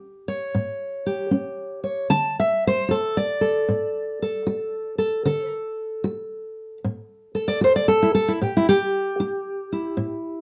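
A fingerpicked steel-string acoustic guitar carries this brief acoustic country blues cut on its own, its old strings giving a woody, dark voice that sits up front from 0.0 to 10.4 seconds. At 76 BPM in 4/4 with a swung eighth-note feel, the mood is swaggering and soulful, moving from A7 to D and settling on A5 at 8.4 seconds. A moderate studio reverb and a warm production round out the sound of this short excerpt from a longer piece.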